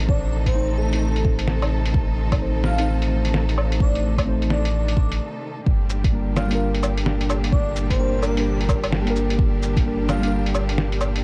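Muffled lo-fi sampler drums of fat snare, hi-hat, cabasa and woodblock in a small room, a round sine sub bass, sidechain-pumped muted felt-like synth keys with chorus and tape echo and clear bowed studio strings open this nocturnal, melancholic future garage cut with swung 16ths, joined a moment later by a deep, tape-coloured electronic kick, while an airy, dreamy lead with chorus, analog delay and 12-bit sampler grit floats above, the whole dark, dry mix pausing for a brief break at 5.2 seconds.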